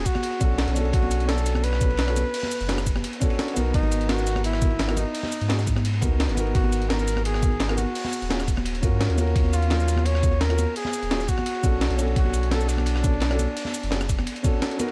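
Soulful and rolling, this excerpt of liquid drum and bass runs at 171 BPM in 4/4, with a close-miked flugelhorn carrying the melody with light vibrato and tape echo over a round, sine-like sub bass that sits up front with tube saturation. A gritty, pitched-up sampler-style breakbeat kit with a high-tuned snare and a thumpy electronic kick drive the groove, backed in the background by a smoother, saturated breakbeat kit with filtered, rolled-off cymbals and by ringing, soft-handed congas. A mellow, intimate grand piano with audible action noise plays chords moving from Bm9 through G#m9 and D#m9 back to Bm9 in a dusky studio production, and a band accent lands at 14.6 seconds.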